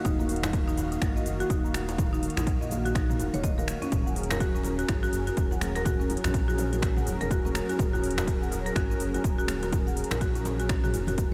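A smooth, detuned analog pad holding an Ebm9 chord opens this warm, hypnotic afro house excerpt, joined from the start by bright, woody marimba arpeggios with analog delay and a round, deep bass, all three pumping under sidechain compression. An overdriven house kit of finger snaps, metallic hats, shaker and toms plays from the first moment, a punchy layered electronic kick enters at 0.1 seconds, and very quiet ringing congas and hard-hand djembe slip in at 0.2 seconds over a swung sixteenth-note feel. The pad carries a mellow chorus, and a light reverb rounds out the groove.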